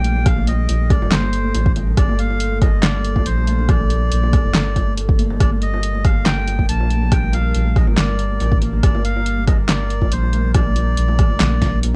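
Dry and close, with the character of a home cassette recording, this twelve-second clip of deep dubstep sits in a dark, meditative mood at 140 BPM in a half-time 4/4 feel, resting on a single G minor add-nine chord. A round, soft sub bass holds the low end up front, while an overdriven electronic kick, deep and layered, enters at 0.3 seconds with a tape-soaked punch. A deep house drum kit adds handclaps, hi-hat, rim clicks and a fat, tape-softened snare, and congas and bongos played with soft hands sit band-limited and vintage in the background. Underneath, a moody, detuned sawtooth pad sustains slow-blooming chords through chorus and its own reverb, roughened by gritty 12-bit sampler texture and cassette coloring. Over it all floats a reedy, breathy melodica line trailed by dub echo, its nasal plastic tone giving the piece its plaintive voice.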